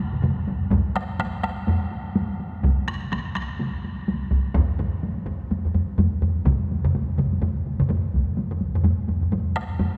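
A cavernous cathedral reverb fills this powerful, ceremonial excerpt of Japanese traditional taiko drumming in 4/4 with a swung sixteenth-note feel. Four acoustic taiko ensemble parts play here, three from the start and one joining at 0.5 s: a hard-stick part close, dry and up front, two heavy-stick parts close and dry, and a heavy-stick part that is compressed and saturated, before the music moves into a new section at 8.4 s.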